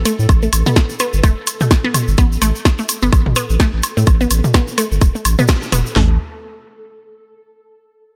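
A lightly reverberant, up-front mix opens this short cut from a longer minimal techno piece, sparse and hypnotic at 127 BPM in 4/4 with a 58% swing on the sixteenths. A saturated sub bass, deep, thick and sine-based with a fast attack, sits at the front ranging from E1 to A2 and pumps against the sidechain. Up front as well, an overdriven garage drum kit with a tight kick, cracking snare and toms is layered alongside a punchy analog drum machine that adds its own overdriven hi-hat and snare, while electronic woodblock and toms trail tape echo and a grainy, mellow tube shaker sounds as if in a small room. A juicy, squelchy pluck built from detuned pulse and sawtooth waves carries the riff between A3 and B3, its resonant filter and moving notch colored by phaser and tape echo. In the background, a swarming, tense drone on A4 swells in with a slow attack and evolves through granular, detuned unison sines with its own reverb, and the whole drop runs from 0.0 to 6.0 seconds with a band accent at 5.5 seconds.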